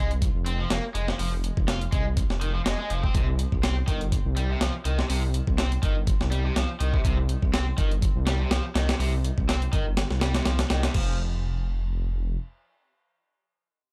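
Breakbeat at 123 BPM in 4/4, this energetic, raw excerpt from a longer piece rides a light 16th-note swing over a drop that moves from F minor to C minor at 3.1 seconds. A sampler-style breakbeat kit sits up front, compressed and pitched up, with a thumpy kick, a medium-tuned snare, hi-hat and crash carrying a tape-warm grit. Beneath it, a dark, detuned sawtooth bass rumbles with a beating, saturated tone, its fast attack and sustained notes also pushed forward in the mix. A bright, overdriven electric guitar picks a garage riff further back, trailed by analog delay. The harmony drops away at 10.9 seconds, the drums and guitar fall silent shortly after, and the bass alone carries on to 12.4 seconds, all captured in a dry, gritty hardware recording touched with digital ambience.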